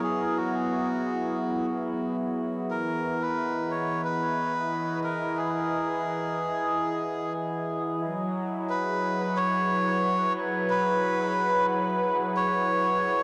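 In a straight 4/4, this hazy, spacious ambient fragment, cut from a longer piece, sets a reedy, breathy melodica melody, colored by cassette tape and dub echo, over a warbling, detuned analog pad of soft-attack sustained chords thickened by chorus, both up front, moving from F#7sus4 to Emaj7 and back to F#7sus4 at 8.0 s inside a wet spring reverb and the sound of a home cassette recording.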